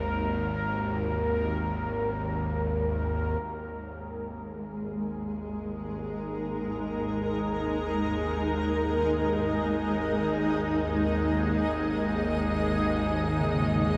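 A cloudy, blurred granular pad takes the foreground once it enters at 4.4 seconds, its evolving sustained chords bright and up front, drawn out with a slow attack and a long release. Beneath it in register, a tense, string-like bowed drone holds low sustained tones with a bright sawtooth edge, a noise layer, ring modulation and vibrato, and it grows through a fade-in that begins at 3.4 seconds. A resonant, bubbling texture of random filter steps, thickened with chorus, rises alongside it on the same fade-in. Very quiet in the background, a bronze gamelan-type metallophone plays soft arpeggios with padded disc mallets, its paired tuning producing shimmering beats in a warm, boxy small room. The dark, unsettling piece drifts in free time inside a vast, echoing space with a huge reverb tail, and this passage is cut from a longer work.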